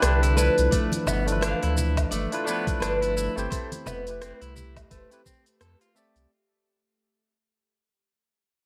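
A fingerpicked nylon-string guitar carries the melody through delay in this sunny, sun-drenched sunset chillout fragment at 86 BPM with a swung sixteenth feel, shifting from G13 to Fmaj9#11 at 3.5 seconds over a barky tine electric piano heard through a combo amp, a faint ethereal pad with ensemble chorus, bright picked clean electric guitar arpeggios, a deep round sine sub bass up front, and a smooth tape-toned electronic R&B kit of hi-hat, rim click, shaker and woodblock, joined by a gritty, thumpy sampled kick from 0.7 seconds and thick-skinned background congas from 0.9 seconds, all under light reverb and a fade-out across the whole clip.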